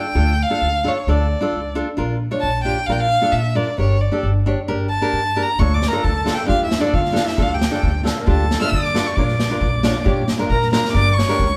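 A straight 4/4 pulse at 134 BPM drives this bittersweet, soulful klezmer piece in D harmonic minor, and it speeds up throughout. A rich, smooth bowed violin with vibrato carries the solo melody up front from the start, over warm fingerpicked nylon-string guitar and a woody, growly pizzicato upright bass, as the chords move through Dm, Bb and Gm. At 5.6 seconds a clear, classical-style clarinet joins with a second line and a polished, airy street-band drum kit enters with boomy kick and medium-tuned snare, the band playing live together in a stone room with moderate reverb.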